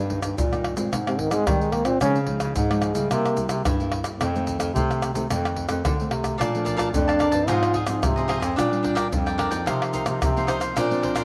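A straight 4/4 samba and choro groove at 110 BPM opens this festive, joyful clip, cut from a longer piece, with a tight surdo, pandeiro, egg shaker and tamborim sounding close, dry and up front. Beneath them, a thumb-plucked nylon-string guitar lays down classical-style chords while a warm bass clarinet carries the bass line with vibrato, scooped notes and a roomy jazz inflection. A mellow trombone takes the solo melody from 1.1 seconds, its scooped jazz phrasing sitting present over a light reverb and studio ambience. At 6.4 seconds a crisp, picked cavaquinho joins higher up, and the trombone returns briefly at 6.9 seconds. The harmony moves from Eb/G through Ab, Dbadd9 and C7 to F7, then on to Bbmaj7, Fm7/Ab, Bb6 and F7sus4/C.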